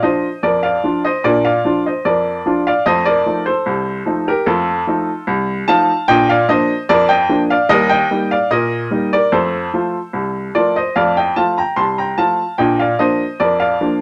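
A clear, woody upright piano plays a cheerful, jaunty ragtime passage alone for the full 14.0 seconds, its short-sustained notes ranging from C2 to C6 and sitting up front in a moderate small-room reverb, in a straight 2/4 feel cut from a longer piece.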